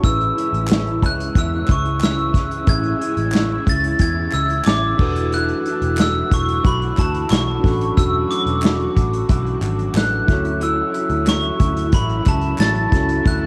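A laid-back, nostalgic indie and bedroom pop excerpt where an up-front, bell-like glockenspiel carries the melody through lush chorus and tape echo over a slightly broken-up guitar, a tine electric piano and a sawtooth string machine in the background, a dark, foam-muted picked bass, an unplugged drum kit played with bundle sticks, and crisp group handclaps from 0.7 s, all moving from Amaj7 to E9sus4 to Dmaj9 inside a cassette-warm home-recorded sound.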